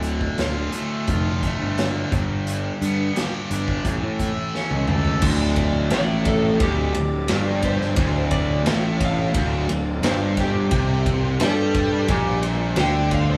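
Captured as a band playing live in a small room with moderate studio reverb, this gritty, brooding classic rock excerpt moves at 87 BPM in a straight 4/4, shifting from D dorian to D minor at 5.2 s. Up front, a fuzzed, overdriven picked bass anchors a pair of bright overdriven guitar riffs, one very quiet, while a big acoustic kit with bright cymbals and a boomy kick plays a fill into the second section. From 5.2 s a double-tracked, compressed fuzz guitar sits in the background alongside a very quiet, shouting tonewheel organ with key click and slow rotary speaker, and at 5.9 s a dark, slightly broken-up slide guitar takes the solo melody.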